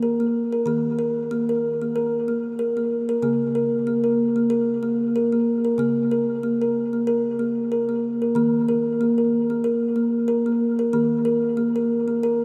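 A solo kalimba carries this gentle, meditative world piece, its woody, ringing, dark tone plucked with a thumbnail, sitting up front and fed through an analog delay. At 94 BPM in 4/4 with a light swing on the sixteenths, the harmony moves from Eb5 to Bbm/Db at 3.2 seconds and returns to Eb5 at 8.4 seconds. A huge ambient reverb and a cassette tape character make this 12.4-second fragment of a longer piece sound dreamy and soaked.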